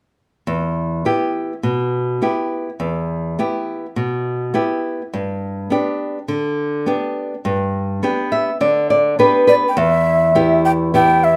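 Wistful and earthy, this short cut from a longer Andean folk piece moves at 103 BPM in E minor pentatonic. A small, up-front fingerpicked nylon-string guitar with fresh strings and audible finger squeak moves from Em to G and plays a fill from 8.0 seconds. A breathy large quena with a crisp, chiffy attack and an unsteady, woody straight tone then enters at 9.5 seconds, slightly louder than the guitar. Both sit in plate reverb within a rough home-demo mix.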